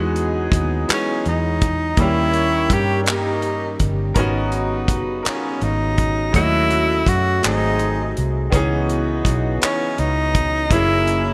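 A slow, straight 6/8 pulse at 55 BPM, counted in dotted quarters, sets up this sensual R&B fragment cut from a longer piece. The soul drum kit enters at 0.2 seconds with a tight kick, hi-hat and handclaps, its rolled-off top wrapped in gated reverb and sitting up front beside a dark, round, foam-muted fingered electric bass. A clear grand piano with short sustain and a subtle chorus plays the accompaniment, while a very quiet French horn section holds soft-attack sustained chords and a mellow, tight horn section adds delayed stabs in the background. From 0.9 seconds a breathy tenor saxophone carries the melody up front in a jazz style, with vibrato, soft attacks, scooped notes and a touch of delay. The harmony moves through lush jazz-tinged chords, from Emaj9 and G#m11 through D#m7b5 and G#7b9 to C#m9 and F#7. A small-room ambience and light reverb frame a bright, 1980s-style digital production with a warm, intimate mood.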